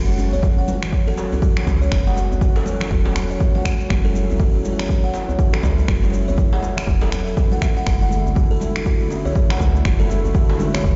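Afro house at 121 BPM in 4/4 with a 16th-note swing, this earthy, hypnotic excerpt sits in F# minor. A punchy, layered electronic kick sits up front from 0.4 seconds, alongside electronic cabasa and finger snaps re-recorded in a small room. Behind them, high-tuned, thin-skinned congas played with soft hands and a deep djembe with metal rattles struck by hard hands sit distant in a large room. Underneath, a woody, round FM bass with a fast attack and dark decay breathes with sidechain pumping, while a buzzing kalimba with a hollow-box ring plays arpeggios through digital delay. A smooth, detuned sawtooth pad holds sustained chords with chorus, tremolo and pumping, shifting from F#7(no3) to Dsus2 at 7.9 seconds. The mix sounds as if played back through a big sound system in a bare room, with its top end rolled off above 7.7 kHz.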